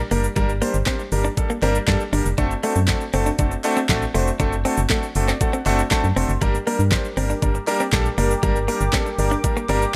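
Dance-pop in G harmonic minor at 119 BPM, this short excerpt carries a confident yet bittersweet mood over a straight 4/4 pulse, moving from Gm to D7 and back to Gm. An up-front, organ-like FM bass with a hollow, percussive, fast-decaying tone anchors the low end, pumping with sidechain alongside a clear, intimate concert grand piano whose audible action noise and long sustain give it a polished presence. A smooth R&B drum kit with a knocking kick, fat snare, crisp hats, shaker and handclaps drives the groove, joined from 0.9 seconds by a very quiet, close and dry group handclap. A direct-recorded clean electric guitar plays a scooped, picked riff bathed in lush chorus, while the piano adds a fill from 4.9 seconds. At 6.4 seconds a mellow analog pad built on detuned sawtooth and triangle tones with ring modulation and a moving notch slips in behind everything, its chorused, slow-attack chords also breathing with the sidechain, all set in a digital ambience.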